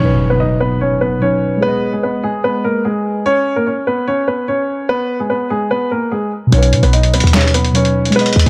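A half-time trap groove at 147 BPM in 4/4 arrives only at 6.5 s, when a gritty, pitched-down sampler-style kit of snare, hi-hat and handclaps joins a tight, punchy 808-style bass to round out this triumphant yet wistful hip hop excerpt in B major. From the start, a worn, up-front baby grand piano carries the melody over muted, felt-like synth keys with chorus, which drop out between 3.3 and 6.5 s, while an electronic impact strikes at the opening. The production is dark and warm, with light reverb.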